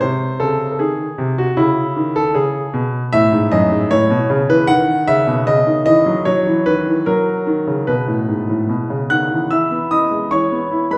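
In a straight two-beat metre, this short passage from a classical-period piano sonatina moves at an unhurried, graceful pace, elegant and cheerful in mood. A single baby grand piano plays alone throughout, from 0.0 to 11.0 seconds, spanning a range from F#2 up to F#6. Its tone is warm and natural, with a short sustain and a presence that sits up front. The instrument is surrounded by a wet recital hall reverb, and the room is heard from further back, which adds a sense of open space. After a searching diminished opening, the harmony settles into a bright, tuneful progression, and at 9.5 seconds a new section begins before the passage is cut off.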